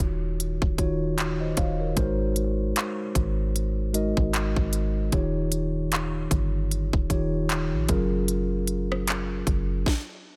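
A light reverb gives this short contemporary R&B clip a late-night, longing air, with a clean, mellow tine electric piano sitting up front and sounding as if played through its built-in speakers as it moves through Ebm7, Ab7, Eb7 and Gbmaj7 in a swung sixteenth-note feel. Beneath it, a soft 808-style bass adds a deep, round, dark sine tone with a fast attack that decays away, while an up-front, produced trap kit brings a hard-clipped kick, sharp snare, crisp hi-hats, handclaps and rim clicks. The parts drop out around the 10-second mark, leaving a brief stop at the end.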